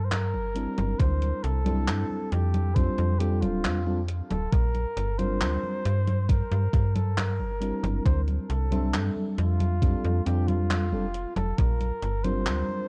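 A warm flugelhorn carries the solo melody from the first second, its smooth top and jazz-style vibrato floating through tape echo in this woozy, nostalgic vaporwave excerpt, set at 68 BPM in 4/4 with a straight feel in G dorian. Beneath it, a snappy FM bass with a metallic, fast attack and decaying notes sits up front in the low register. The thumpy electronic kick drum, overdriven and coated in 12-bit sampler grit, is the loudest part and enters at 1.0 seconds. A gated 80s digital drum machine adds congas, handclaps and hi-hat, overdriven and gritty with gated reverb and analog delay, and re-recorded in a small room like the kick. From 0.5 seconds, a mellow FM electric piano supplies soft, round, full-bodied and dark chords with a noise layer, analog chorus and delay, cycling twice through Gm, D7sus4, F6 and Bb69 in an echo-heavy, cassette-toned mix with little reverb.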